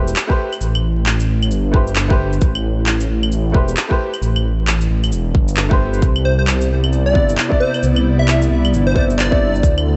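Ghostly and wistful, this future garage excerpt moves at 133 BPM in 4/4 with a swung sixteenth-note feel, cut from a longer piece and moving from Am9 to Cmaj9 at 6.0 seconds. A bright, woody, slightly detuned upright piano carries the accompaniment with vintage 12-bit sampler grit, digital delay and sidechain pumping, while a menacing, saturated detuned saw bass with a filter swell sits up front and pumps beneath it. Electronic shaker, handclaps and claves join with a tight, up-front electronic kick drum, both re-recorded in a small room. A punchy, catchy plucky unison lead enters at 6.2 seconds with digital delay, and an airy, breathy pad with a slow attack and warbling chorus follows at 6.7 seconds, also pumping with the sidechain. Light reverb, digital ambience and vinyl crackle frame a rolled-off sound with nothing above 8.0 kHz.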